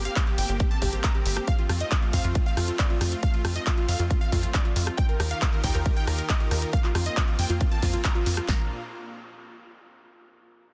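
A dense, heavily limited master with little reverb carries this euphoric, soaring uplifting trance drop, cut from a longer piece: a detuned, wave-folded unison pluck carries the melody with sidechain pumping and delay, a mellow, very quiet plucky unison lead adds a second line, a lush supersaw pad pumps through bright sustained chords moving from Gm to F, Ebadd9 and Fsus4, and a tight sawtooth sequencer bass drives underneath, while a big-room dance drum kit with an up-front punchy kick and snare joins a dry analog drum machine's handclaps, pumping hi-hat and rim click before a band accent at 8.0 seconds and a move to Bb at 8.5 seconds.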